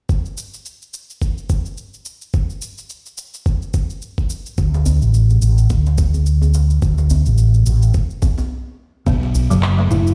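Organic downtempo at 107 BPM with a swung 16th-note feel, earthy and mystical in mood, this short cut from a longer piece opens on a tape-toned afro-pop drum kit of handclaps, shaker and toms under a gritty, thumpy overdriven electronic kick up front. At 4.6 seconds an amped fretless electric bass arrives over a D5 chord, thickened by ensemble chorus and sidechain pumping, and a deep djembe with metal rattles follows. After a stop at 8.5 seconds, a buzzing, woody kalimba plays short vintage-sounding arpeggios through digital delay over B5 from 9.1 seconds, the whole mix carried by a big sound system into a bare stone room.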